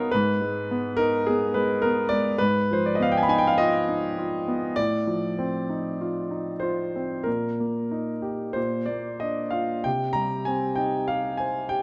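Close, detailed microphones capture a concert grand piano up front in a recital hall, with a moderate reverb of about 1.5 seconds lending air around the natural, deep-bassed tone. This short excerpt comes from a romantic nocturne for solo piano in 4/4, moving at a slow 46-53 BPM with a freely breathing rubato feel. The mood is nostalgic and dreamy, as the harmony drifts from A-flat minor through a half-diminished chord over an A-flat bass and an F7 over A. It then settles through E-flat over B-flat and B-flat before arriving on C minor near 9.9 seconds. The piano spans a range from low Ab2 up to Cb6 and carries the music alone for the full 11.8 seconds, tuned slightly bright at A4 = 441 Hz.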